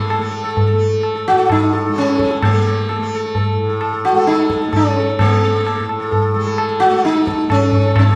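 Set in a straight 3/4 at 130 BPM, this brief Hindustani classical passage in raga Marwa on A carries a devotional, meditative mood and is cut from a longer piece. An up-front sitar carries the melody between Bb3 and A4 with a round, buzzing, plectrum-plucked tone haloed by sympathetic strings, while a softly plucked tanpura drone sits lower and quieter, warm and shimmering. A high-tuned, ringing tabla, miked close and also up front, provides the percussion, and the whole ensemble is bathed in a reverberant recital-hall ambience.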